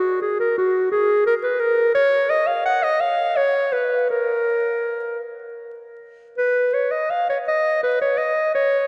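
A clear, close-miked solo clarinet opens this introspective, solemn fragment of a baroque-style classical fantasia, played with free rubato and uneven beats in 6/8 at 55 BPM. It moves between Gb4 and Gb5 for 8.9 seconds, set up front in a long, wet cathedral reverb, with a dark, warm production and a bed of vinyl crackle.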